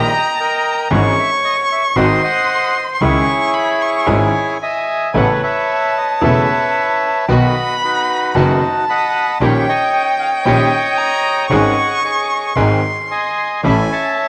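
A reedy, bright bandoneon carries the melody up front from the start, together with a close, expressive violin second line with vibrato and portamento, a brilliant grand piano accompaniment, and a bowed double bass whose biting, earthy tone has a light vibrato. This playful, elegant tango in C# minor moves at 114 BPM with a rubato feel, and at 5.1 s a rich, focused studio string section adds distant bowed stabs in the background. The bandoneon, violin, piano and strings carry a cassette-tape colour, and the whole passage, cut from a longer piece, sits in a lush hall reverb with the character of a home cassette recording.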